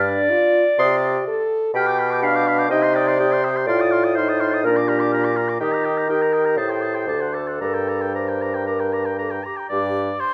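A quick, dramatic and restless classical-period wind quintet excerpt in flexible rubato, where an airy, hollow flute with vibrato carries the high melody over French horn and clarinet accompaniment and an up-front, clear bassoon bass, while the oboe joins at 0.8 s with a lightly vibrato second line, all set in a moderate recital-hall reverb.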